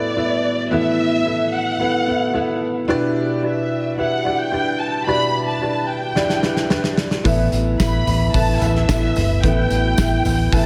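A dark violin section with vibrato and portamento carries the melody with analog delay over a woody upright piano with audible action noise and analog chorus, both up front, in this driving, bittersweet piano-driven pop excerpt. A loose indie drum kit with a punchy kick and rolled-off top enters with a fill at 6.2 seconds, and at 7.3 seconds a round, foam-muted fingered electric bass joins, along with a mellow French horn section carrying a second line and a jingly tambourine, both in the background. The dreamy mix is soaked in a lush hall reverb as the chords move from Asus2 to Em7 and back.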